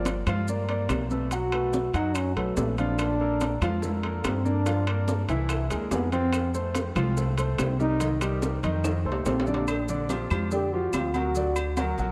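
Soaked in a dreamy cathedral reverb, this sophisticated, lively Afro-Cuban jazz excerpt moves at 144 BPM in a straight 4/4, led by a mellow, punchy trombone solo with light vibrato and tape echo over harmony that shifts from Gm9 through C7alt and Fadd9 to a closing Daug. A clear, intimate baby grand piano with audible action noise comps beneath, while an up-front upright bass plucks dark, thumpy gut strings. Bright, high-tuned congas sit in the background alongside ringing timbales and agogo bells, grainy close maracas, very quiet woody claves, and tight, distant bongos and cowbell that join at 3.0 s, with a drum fill at 8.8 s.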